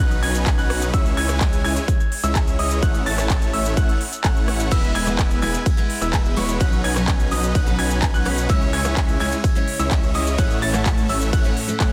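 Festival progressive house at 127 BPM in a straight 4/4, this uplifting, anthemic cut from a longer piece moves through Badd9, C#m, A and E. A huge, lush supersaw riff and a thick, chorused detuned saw bass with tube saturation start at once, both pumping against the sidechain, while a concert grand piano with audible action noise plays high arpeggios through tape echo. The big-room dance kit, with crisp hats, handclaps, rim clicks, shaker, ride and crash, arrives at 0.1 seconds, and a punchy, overdriven electronic kick sits up front from 0.5 seconds. At 4.7 seconds a bright, picked steel-string dreadnought joins in the background, its accompaniment also pumping and echoed. The mix is dry with little reverb, and the master is dense and heavily limited.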